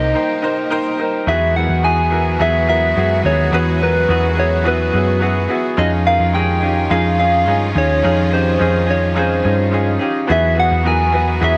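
Piano-driven pop with an uplifting, hopeful mood, cut from a longer piece, where a gentle, warbling FM synth lead carries the melody through chorus and tape echo over a woody upright piano with its own tape echo, smooth bowed studio strings holding sustained chords behind them, a twangy, direct-recorded clean electric guitar riff glazed in lush chorus and tape echo, and a round, dark hollow-body bass up front, set in an echo-heavy mix with moderate spring reverb as the harmony moves from Cm7 to Eadd9 at 1.3 s.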